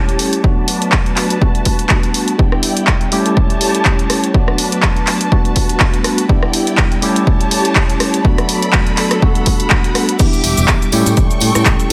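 Filtered disco house at 123 BPM in E minor with a swung 16th-note feel, funky and sensual, in which a clean tine electric piano with phaser and a lush, vibrato-rich bowed string section, both coated in vintage 12-bit sampler grit, sidechain-pumped and low-pass filtered, cycle through Bm7, Gmaj9, Em7 and A7 over a very quiet, direct fingered electric bass, an up-front punchy electronic kick and a tape-warmed analog drum machine of crash, handclaps, hi-hat, rim click and shaker with pumping hats, cymbals and percussion, while a filter-sweep build-up gives way at 10.2 s to a drop where a compressed, saturated tambourine slips in at the back.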